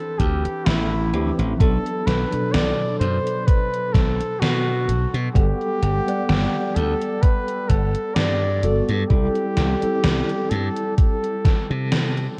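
Vaporwave at a slow 64 BPM in G major with a gently swung 4/4 feel, this short, faded and dreamy excerpt drifts through D9sus4, Bm7, Gmaj9 and C6 in a mix soaked in plate reverb and cassette-tape haze. A clear, close-miked flugelhorn carries a classical-style solo melody through tape echo over a mellow tine electric piano bathed in ensemble chorus. A bright, punchy slap bass and a thumpy, up-front electronic kick join at 0.2 seconds, alongside an overdriven 80s drum machine whose hi-hat and gated-reverb snare sound re-recorded in a small room.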